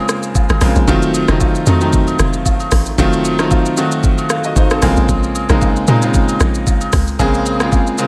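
A bright concert grand piano opens this deep, hypnotic amapiano excerpt, its brilliant, natural tone sitting up front with a rich low register as it moves from Bbm9 to F7b9 and back. An electronic R&B drum kit joins at 0.1 seconds with a knocking kick, metallic hats, rim clicks and shaker, produced and placed close to the listener over a gentle sixteenth-note swing. At 0.4 seconds, woodblock and agogo bells add an acoustic, live-room texture in the background. Around 0.5 seconds the log drum bass arrives: tight and punchy, with a fast attack, an FM tone, a noise layer and a mellow decay. Light reverb and digital ambience give the groove a polished space.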